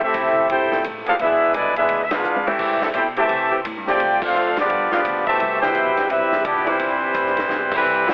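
Big band swing at a brisk 171 BPM in C major, this brassy, joyful fragment from a longer piece has a clear, up-front trumpet section carrying the melody over a brilliant trombone section with vibrato and a soft attack. A woody pizzicato upright bass and a swinging acoustic drum kit with a punchy kick drive the chords from Fmaj9 through E7, Am7, Dm7 and G7 to Cmaj7, while a warm saxophone section enters at 0.7 seconds with tight sustained chords in the background. Band accents land at 2.1, 4.2 and 7.7 seconds around short drum fills, all heard through a heavily compressed, telephone-like radio sound in a moderate studio reverb.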